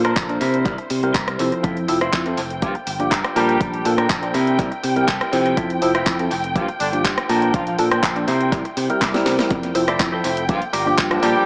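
Filtered disco house at 122 BPM in F major, feel-good and sunny, with a punchy electronic kick and a house kit of cracking snare, handclaps, rim click and sidechain-pumped hi-hat alongside a growly fingered electric bass, a twangy clean guitar riff tucked in the background, a phased tine electric piano with 12-bit sampler grit and lush bowed violin chords, all five pitched parts pumping under a low-pass filter, while a tight, octave-doubled horn section carries the melody from 2.6 s over a C7, Fmaj7, Gm7, Bbmaj7 cycle in an echo-heavy, small-speaker mix with spring reverb, until a drum fill at 9.0 s tips into the drop at 9.5 s.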